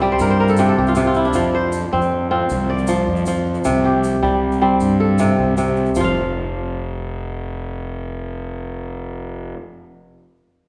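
A straight 12/8 pulse at 104 BPM, counted in dotted quarters, carries this hypnotic cut from a longer piece of West African traditional string and xylophone music. The kora sits up front, its fingerpicked arpeggios ringing and crisp across a range from C3 to G5. It opens with a fill over the first 1.3 seconds on a C5 chord before moving to F5. Beneath it, a fingered electric bass runs through fuzz and overdrive, its round, punchy tone placed close while it holds the low register from F1 to G2. A grainy, bright egg shaker adds faint texture until 6.1 seconds, just after the music moves into a new section where the chords drop away. The recording is heard from further back in a wet recital hall, and its 1.6-second reverb tail gives the mood a warm glow.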